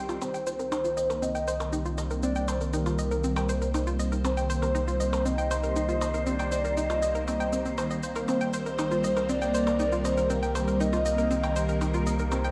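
Ambient, sequencer-driven space music with a hypnotic, cosmic mood, cut from a longer piece and resting on a single C minor seventh chord in a steady, straight four. A phased string machine holds sustained chords throughout, its sawtooth tone swirling and vintage under ensemble chorus and phaser, while a hollow square pluck repeats a bouncy, detuned riff with a fast attack and short decay, treated with chorus and analog delay. Beneath them a deep, round sine sub bass sits up front on a low C. Cabasa and electronic percussion blips enter at 0.1 seconds, set back in the mix and echoed by analog delay, and a soft octave-layered synth lead arrives at 0.2 seconds with a full, mellow triangle-and-sine tone, vibrato, chorus, phaser and delay. The whole passage is bathed in a wet concert hall reverb that gives it a spacious, floating sheen.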